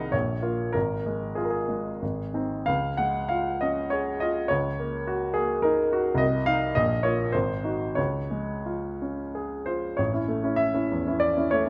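Lyrical and passionate, this romantic character piece for solo grand piano moves in a flexible, rubato 3/4 at roughly 85-110 BPM in Db major, its clear, present tone sitting up front through close, detailed miking in a moderate recital-hall reverb, with chords drifting from Bbm through Ab7 to settle on Db at 8.0 seconds before a new section opens on A at 10.0 seconds in this short extract from a longer work.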